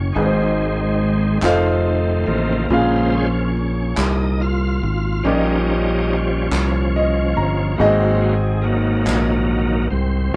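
Jubilant and uplifting, this brief slow gospel passage at 47 BPM in a straight 6/8 features a bright, shouting tonewheel organ soloing up front through a slow rotary speaker with light overdrive, chorus vibrato and key click, over a clear, intimate grand piano whose action noise is audible and which adds a fill from 6.5 to 7.8 seconds, a growly, punchy fingered electric bass, and hollow, distant group handclaps from 1.4 seconds, all played live in one room with moderate studio reverb as the chords move from Ab through F7 and Bbm7 to Eb7/Bb and Ab7.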